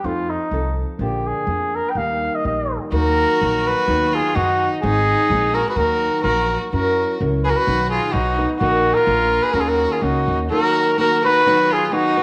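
Mexican folk mariachi in Eb minor at 126 BPM in 2/4, romantic and festive, with a loose swing and rubato feel. A mellow, roomy, classical-style trumpet carries the melody up front over a small, thumb-plucked nylon-string guitar and a woody, growly pizzicato upright bass that stops at 10.5 seconds. A focused, close violin with vibrato enters at 2.9 seconds on a bowed second line, and a wet echo-chamber reverb gives this short cut a spacious studio sheen.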